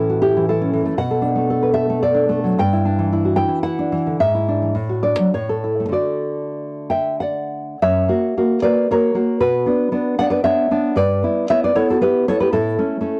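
Nostalgic and warm, this brief romantic excerpt for solo nylon-string guitar sways in a rubato 3/4 between 91 and 124 BPM in D major, its dark, full-bodied, thumb-plucked tone sitting up front with audible finger squeak, moving through chords such as Bm7, Em7/G and F#7 across two statements of the same section, the second arriving at 7.8 seconds, all wrapped in light reverb on a dry, gritty cassette-tape recording.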